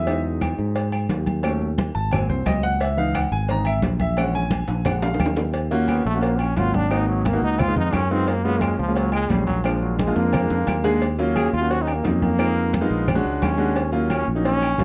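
Afro-Cuban jazz with a fiery, sultry mood, cut from a longer piece and moving at a brisk straight four. A grand piano up front opens as the featured voice, intimate and natural with audible action noise and long sustain, over a growly, punchy electric bass and a bed of percussion: congas with thick skins and hard hands sitting in the background, saturated low-tuned bongos with cowbell, ringing metal-shelled timbales with agogo bells, and woody claves from 0.4 s. A drum fill near 5 seconds hands the lead to a brilliant, forceful trombone that enters at 5.9 s, playing a jazz-style solo with scooped notes and light vibrato. Another fill around 10 seconds keeps the drive going as the trombone carries on to the end. The harmony moves through rich seventh chords and altered dominants, all set in a moderate large studio reverb with a dark top end.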